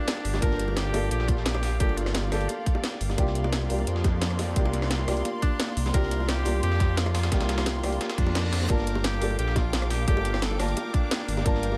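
A clear tenor saxophone with digital delay opens this lush, melancholic liquid drum and bass excerpt in G minor at 174 BPM, over a soft felt-muted upright piano and a distant symphonic string section. The horn pauses and returns at 5.4 seconds, while a menacing, saturated detuned saw bass with a filter swell sits up front beneath the Gm7 and C9sus4 chords. A tight electronic kick leads the drums, layered with a drum and bass kit's cracking snare and metallic hats, a gritty sampler-style breakbeat in the background, and very quiet high-tuned bongos; a reverse cymbal sounds at 8.2 seconds, just before the kick briefly drops out, all in a small room.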